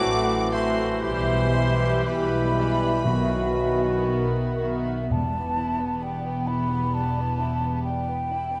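A hollow concert flute with vibrato joins a clear, sul tasto violin melody in this slow, rubato, elegiac E minor passage from a romantic symphonic movement at 54-69 BPM, where a background violin line, soft-attack violas, dark cellos and close double basses sit in a wet scoring-stage reverb while a distant cor anglais, a background clarinet and a bassoon add lines and mellow French horns and trombones sustain chords, these winds and brass all dropping out by about 4.7 s, and timpani struck with medium mallets sound from 3.1 s to 6.4 s.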